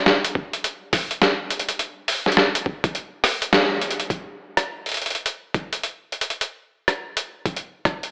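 A gritty, pitched-down boom bap drum kit opens this playful, swaggering glitch hop piece at 104 BPM in 4/4 with a 62% swing on the sixteenths, its hi-hat, rim click and medium-tuned snare compressed, overdriven and up front. A thumpy, sampler-style electronic kick joins at 0.4 s, drops out from 2.9 s to 4.1 s around a band accent at 3.5 s, then returns as the groove moves into a second section. A lush hall reverb and an AM radio tone colour the whole sound.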